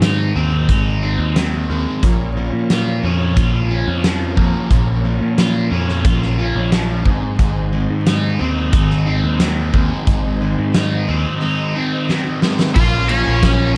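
A growling, overdriven electric bass sits up front in this gritty, swaggering classic rock excerpt at 89 BPM, driven by a huge arena drum kit with a fat snare and punchy kick in a big natural room, while a crunchy phaser-treated guitar and a hollow-body semi-hollow guitar, set further back, play riffs over Ab and Bbm chords. A full-bodied jumbo acoustic guitar picks an accompaniment in the background, and from 2.0 seconds a very quiet tonewheel organ adds shouting, rotary-swirled sustained chords. After a drum fill, a dark octave-fuzz lead guitar with wah enters at 12.8 seconds for a brief melody, all under light reverb and vinyl crackle.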